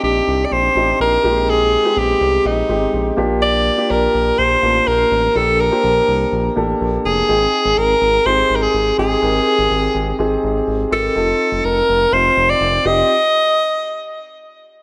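A bright alto saxophone carries the melody up front in this glossy, uplifting 1980s-style pop passage, its present, pop-style tone marked by light vibrato, scooped notes and a tape echo. Beneath it, a dark baby grand piano supplies mellow accompaniment with long sustain, while a smooth synth bass with a sawtooth and square-wave character gives a sustained, evolving low end touched with vibrato. The tempo sits at 124 BPM in a straight 4/4, and the harmony moves through rich slash chords over Bb before settling onto Abmaj7 at 7.3 seconds and F7 near the close. The bass and piano drop out around 13 seconds, leaving the saxophone alone until it finishes at 14.3 seconds. A moderate plate reverb lends the whole passage a polished sheen, and the recording is cut from a longer piece.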